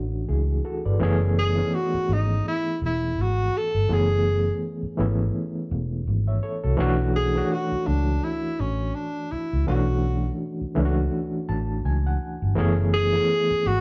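A swung 16th-note groove at 83 BPM in 4/4 sets an introspective, late-night neo-soul and R&B mood in B dorian, moving between Bm11 and F#m11 in this short cut from a longer piece. A round, foam-muted vintage electric bass and a gritty, overdriven reed electric piano with fast tremolo, played through a combo amp, both sit up front from the start, and the piano adds a fill at 11.1 seconds. A mellow tenor saxophone enters at 1.4 seconds with a jazz-style solo of scooped notes and a smooth top, and the band plays live together in a large studio with moderate reverb.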